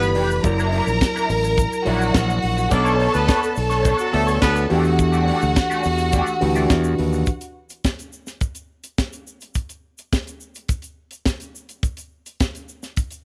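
A clear, smooth string section carries the second line up front in this driving, glamorous disco cut at 105 BPM in E dorian, over a punchy, bright fingered bass and a tight funk kit with a high-tuned snare. A slightly broken-up electric guitar through wah, a worn, slightly out-of-tune tine electric piano and a present horn section playing stabs until 4.7 s fill out chords such as F#7b13 and Bm9, with the electric piano adding a fill from 6.1 s. At 7.3 s the other parts fall away, leaving the drums and a grainy shaker in the background within light small-room reverb.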